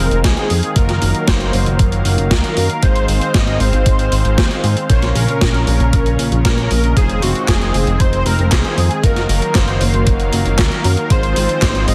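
Synthwave at 116 BPM in F phrygian, nocturnal and nostalgic, where a thick, detuned unison lead with vibrato and tape echo carries the melody over a warbling, sidechain-pumped analog pad with 12-bit sampler grit, nasal synth brass stabs sitting in the background, an up-front glossy pulse-wave bass, a thumpy overdriven electronic kick, and a gated 80s drum machine of handclaps, hi-hat and gated-reverb snare, all moving through Fm7, Ebmadd9/Gb, Fm7/Ab and Bbm in a dense, heavily limited modern master cut from a longer piece.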